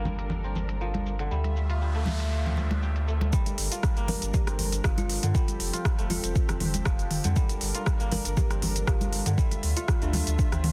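Earthy and hypnotic, this afro house excerpt in G dorian moves at 119 BPM with a gentle 16th-note swing, opening on dark, veiled con sordino strings holding sustained chords, crisp fingerpicked kora arpeggios with tape echo, and a round sine sub bass, all pumping under sidechain, while a tape-warm afro-pop kit of cabasa, smooth hats, rim click and toms joins close, dry congas tucked in the background. A brief electronic noise sweep from 1.5 to 3.3 seconds leads into the drop at 3.3 seconds, where a deep, layered electronic kick lands up front and a woody, hollow kalimba melody with 12-bit sampler grit and tape echo enters at 4.1 seconds. Chords cycle through Gm7, Dmadd9 and F in a dry, dense, heavily limited mix with a low-pass-filtered master.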